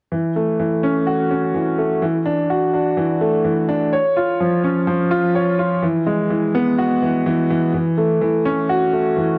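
Recorded at home on cassette with tape echo and a short, wet booth ambience, this brief, cinematic electronica fragment cut from a longer piece features a bright, woody upright piano played up front with long sustain, repeating a moving riff in straight 4/4 from 0.1 to 9.4 seconds.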